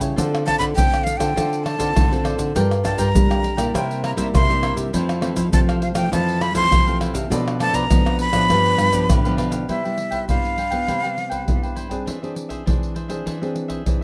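A joyful, lively samba and choro groove at 101 BPM opens with a bright, crisp picked cavaquinho, a fingerpicked nylon-string guitar with fresh strings and audible finger squeak, a thumb-plucked classical guitar bass line, and up-front hard-hand percussion of tube shaker, deep surdo, pandeiro and tamborim in a small room, before a breathy, expressive metal jazz flute with vibrato takes the tongued melody from 0.5 s, the bass guitar dropping out as the harmony settles into C major at 9.7 s and the flute finishing at 11.7 s in this lightly reverberant, closely miked clip cut from a longer piece.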